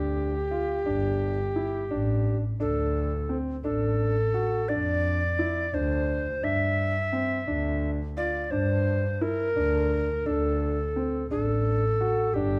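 Restless and pensive, this short contemporary chamber excerpt in a lopsided 11/8 sets an airy, chiffy tenor recorder with an unsteady straight tone up front on a second line over mellow, long-sustaining arpeggios from a vintage baby grand piano and a close, bowed double bass played sul tasto with light vibrato, all in a dark production with light reverb.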